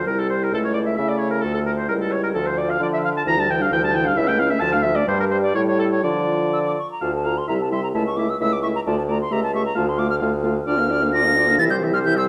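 A two-beat pulse with a flexible, rubato feel drives this quick, graceful classical-period movement for wind quintet, lively in mood and cut from a longer piece. The hollow, airy concert flute carries the melody with vibrato and a soft attack, while the oboe adds a second line with light vibrato, sounding distant and roomy yet up front in the balance. Beneath them, the mellow clarinet sits in the background as accompaniment alongside the smooth-topped French horn, and the bassoon anchors the bass with light vibrato and a vintage, up-front character. All five play throughout the roughly 12-second span, which states its opening phrase and then returns to it at 7.0 seconds, moving through minor-key harmonies around a tonic of D minor with touches of diminished and dominant colour. The recital hall reverb lends moderate space, and the production is dark and warm.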